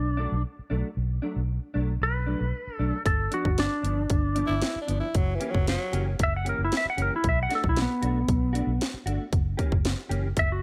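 Mournful and smoky, this straight-eighth soul blues excerpt in B minor at 115 BPM sets a twangy clean lap steel melody over a round, foam-muted vintage bass, while a mellow electric guitar adds dark stabs with ensemble chorus, a garage drum kit with tight kick, cracking snare and bright hats enters at 3.1 seconds, and a raspy, growling tenor saxophone plays a brief second line from 4.5 to 6.1 seconds, all moving through Bm7, G7 and F#7b9 in a digital ambience.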